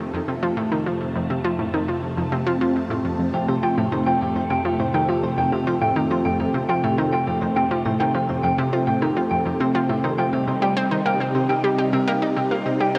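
A vast, echoing cathedral reverb surrounds this mysterious, hypnotic stretch of ambient, sequencer-driven space music, cut from a longer piece and moving at a straight 103 BPM in 4/4. A swirling, vintage phased string machine holds sustained chords up front, its soft attack and long release colored by ensemble chorus, phaser and shimmer reverb. Almost at once, at 0.1 seconds, a round, nasal analog pluck joins with a bright, wave-folded riff of fast attacks and short decays, carried on chorus, shimmer reverb and tape echo. At 3.3 seconds a clean, twangy electric guitar enters with picked, compressed arpeggios in a higher register, also trailed by shimmer reverb and tape echo. The harmony rests on F before shifting to C minor at 10.3 seconds, deepening the entrancing, otherworldly mood.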